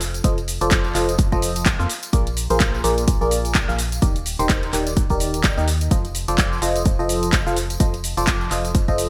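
Feel-good and joyful, this piano house cut moves at 127 BPM in 4/4 with a 16th-note swing, cycling through F7, Bb7 and Ebmaj7 in F mixolydian. A biting, barking FM electric piano riff sits up front with phaser, delay and sidechain pumping, over a hollow, dark, organ-like FM bass that pumps in the same way. A punchy, tape-warm electronic kick and a layered house kit of handclaps, hi-hat and shaker with gated reverb drive it all, while a close acoustic tambourine adds sparkle in the background of this bright, 1980s-style digital production.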